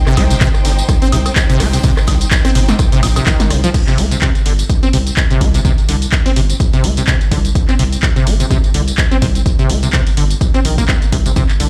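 An excerpt of trippy, hypnotic acid house at 126 BPM in C minor, with a light swing on the sixteenths. It opens on a drop over a C minor chord, where a distant, lush symphonic string section with vibrato lays down a bowed texture that pumps against the sidechain until 3.7 seconds. At almost the same moment, a squelchy, resonant sawtooth acid bass riff arrives with a filter sweep, colored by ensemble chorus, cassette tape and tape echo. A punchy analog drum machine brings crash, handclaps, hi-hats, rim clicks, snare, tambourine and woodblock. An overdriven electronic kick sits up front, re-recorded in a large room, while a deep, thick sine sub bass with tube saturation pumps beneath it. A very quiet acoustic jazz kit with a high-tuned snare adds hi-hat and tambourine early on, drops out at 3.6 seconds, and returns near the end as the groove rolls on with the chords gone, all set in a large studio reverb that sounds like a big system in a bare room.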